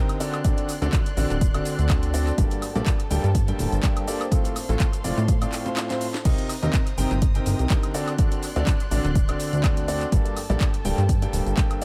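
A bright concert grand piano carries this soulful, bittersweet piano house excerpt at 124 BPM in 4/4, its riff ringing with long sustain and deep bass, colored by tape echo and sidechain pumping. The chords move through D7, Gmadd9, F and Cm7 before returning to D7 and Gmadd9. In the background, a lush, bowed violin section holds sustained chords, expressive with vibrato and portamento. A punchy electronic kick sits up front, joined from 0.8 seconds by a plucky analog bass with a funky, evolving sawtooth-and-pulse tone, fast attack and ring modulation, which also pumps to the sidechain. The house drum kit layers a cracking snare, hi-hat, handclaps, shaker, woodblock and crash cymbal through overdrive and tape echo, with swung 16ths and a brief break and drum fill at 5.8 seconds. Underneath, a very quiet, moody ambient pad adds a detuned, chorused glow, and the mix sits in an echo-heavy digital ambience.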